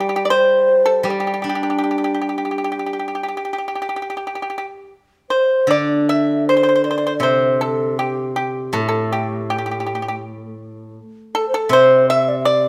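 Chinese traditional chamber music, pastoral and festive at a rubato 80 BPM in the G zhi mode, sets an airy, hollow bamboo xiao melody, distant and tongued in straight tone, over a dry, percussive fingerpicked pipa second line and a bright, silvery, ringing steel-string zither accompaniment, both up front in light reverb through close, detailed microphones, in a 12.7-second excerpt that moves into a new section at 5.7 seconds.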